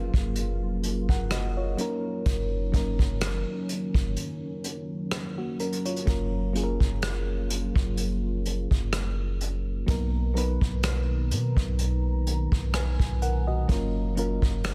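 A dense, heavily limited modern master in a small room frames this dreamy, tender contemporary R&B excerpt in F# major, moving at a slow 63 BPM with a light 16th-note swing over chords of F#maj7, D#m7/F#, and Bmaj7, with a break from 4.2 to 6.1 seconds. A round, sine-like 808-style bass and a punchy, up-front brush kit of kick, hi-hat and rim click carry the groove, the snare softly clipped and the room pumping. A warbling, vintage FM electric piano with a noise layer plays accompaniment while a moody, detuned sawtooth pad with chorus and built-in reverb sustains chords in the background.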